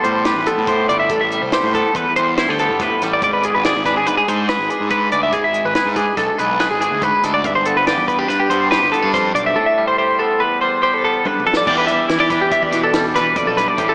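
Heard through a lush, wet hall reverb with a touch of small-room ambience, the recording has a big arena scale that still carries a small-speaker character. This intricate, wistful piece of math rock and midwest emo, cut from a longer work, moves at 142 BPM in 5/4 with a straight feel. Up front, a bright, compressed twelve-string electric guitar plays high arpeggios, while a clean, scooped twangy electric guitar with slapback echo supplies the accompaniment beneath it. A round, overdriven fuzz bass, picked and heard both direct and amped, holds the low end. A compact cocktail drum kit sounds dry and natural, with a high-tuned snare, tight kick, dark cymbals, hi-hat and toms. The harmony moves from Am9 through a rootless E7/G# and Cmaj9/G back to Am9, and after a drum fill at 11.3 seconds the music turns to a new section on Em7 at 11.7 seconds.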